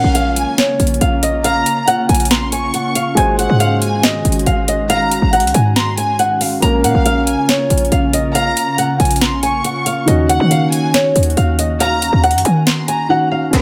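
A woody, fingerpicked nylon-string guitar carries the melody through a low-pass filter and digital delay in this melancholic, eerie half-time trap piece at 139 BPM in Bb minor, moving over Bbm, Ab7 and Ebm7. Behind it, a distant, lush violin section with vibrato adds a second line, a concert grand piano with deep bass plays accompaniment, and a glassy, ethereal FM pad holds sustained chords. A punchy, tight 808-style bass and overdriven trap drums with a sharp snare and metallic hats sit up front; the drums drop out at 13.1 seconds before an electronic downlifter closes this cut-down passage at 13.5 seconds.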